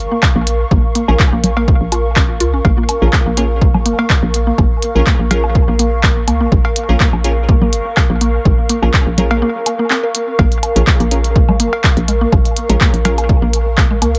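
A hollow, knocking FM bass pumps beneath a punchy, up-front electronic kick in this hypnotic, clinical minimal techno excerpt in Bb minor at 124 BPM with a light swing, joined by a clicky drum kit of handclaps and hi-hats, layered cowbell, woodblock and congas trailing dub echo, a woody, nasal, mallet-like synth pluck riff with chorus and tape echo, crisp detuned wavetable chord stabs entering at 1.1 seconds, and a soft, breathy pad drifting behind a moving notch, all in an echo-heavy mix with a brief break at 9.4 seconds.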